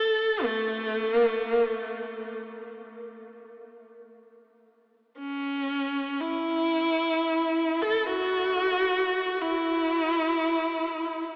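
This short excerpt, cut from a longer piece, moves in free time, unfolding as meditative world music with a peaceful, calm mood in A major pentatonic, tuned to A4 = 442 Hz. A single bowed viola carries it alone from 0.0 to 11.4 seconds, sitting up front and ranging from A3 to A4. The player's tone is warm and expressive, shaded with vibrato and gliding portamento between notes. The line is heard in two passages of the same material, the second beginning at 4.1 seconds. A wet cathedral reverb with a 6.1-second decay places the viola in a vast, echoing space, while the overall sound carries the colour of an AM radio.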